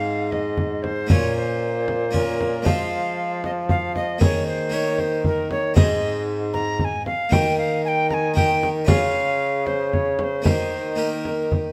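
An airy, wooden alto recorder with a gentle chiff and vibrato carries the melody over a full, plucked harpsichord and a warm, roomy bassoon bass from the very start, joined at 0.3 seconds by a deep, close and dry frame drum played with soft hands, in this courtly, stately renaissance-style consort dance in triple time, cut from a longer piece and set in a moderate stone room reverb.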